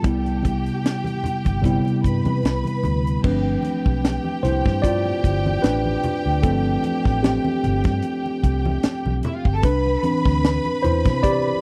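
Dry, close small-room sound frames this bittersweet, silky 1970s-style soul excerpt at 75 BPM with a swung 16th feel, where a worn, slightly out-of-tune tine electric piano sits up front over an opening Cmaj7 chord and takes a solo from 3.2 seconds over G9sus4 and Cmaj9 chords, backed by a tight funk drum kit with a high-tuned snare, a dark, round, foam-muted fingered electric bass, low-tuned congas in the background, and a bright, lush bowed string section with vibrato and tape echo.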